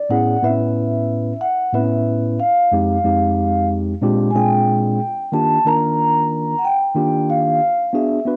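A soft-mallet vibraphone opens the clip at 0.0 seconds, its ringing, metallic tone softened by a slow motor vibrato and a band-limited, vintage cassette-tape colour as it carries the melody between D5 and A#5. A mellow tine electric piano follows at 0.1 seconds with clean accompaniment from F2 to B4, heard through its built-in speakers. Both parts sit up front in this mellow, nocturnal hip hop piece at 92 BPM in 4/4, with a 65% swing on the sixteenths giving it a relaxed lilt. The harmony moves from Aadd9 through Fm7 and A#13 to D#maj7 within a single section lasting 8.4 seconds. A moderate spring reverb and small room ambience frame the home cassette recording, lending this short cut from a longer piece an intimate, late-night glow.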